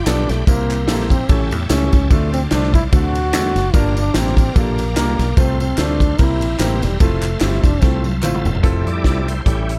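A swung 4/4 groove drives this uplifting, soulful uptempo gospel excerpt, where a big-band drum kit with a boomy kick, a round, punchy fingered electric bass, a deep-toned concert grand piano and small-room handclaps with tambourine back a close-miked, mellow jazz trombone melody over a shouting, lightly overdriven tonewheel organ with key click and slow rotary speaker, until a drum fill at 7.8 s leads into an organ solo at 8.6 s as a tight, very quiet French horn section enters with sustained chords, the whole heard in studio ambience.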